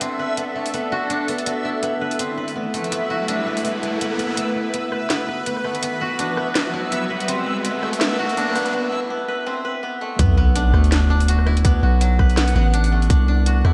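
A woody, fingerpicked koto plays dry, low-passed arpeggios up front through this spacious, cinematic half-time drum and bass cut in B minor at 165 BPM, over a bright, detuned string-like drone with phaser, vibrato and sidechain pumping that stops at 8.7 s, a reversed, granular swelling texture in the background, electronic riser and sub-drop effects, and a kit of cracking snare, rim click and metallic hats; the drop at 10.2 s then adds a deep, sine-toned 808-style bass and a tight electronic kick under a dreamy mix drenched in lush hall reverb.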